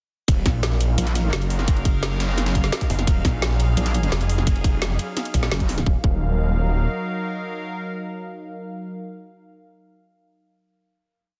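Dark technical drum and bass with a futuristic, aggressive edge, launching straight into a drop where a tight, tape-warm electronic kick, a drum and bass kit with a woody snare and metallic hats, and a gritty, pitched-up breakbeat loop tucked in the background drive the groove. A snarling, saturated saw bass growls up front in chopped phrases with sidechain pumping, and from 1.0 seconds a bright, metallic FM wobble bass adds chorused, distorted phrases with changing wobble speed. A sweeping, detuned pad pumps beneath them, then holds the final chord alone from 6.9 to 8.9 seconds in a dense, heavily limited digital ambience.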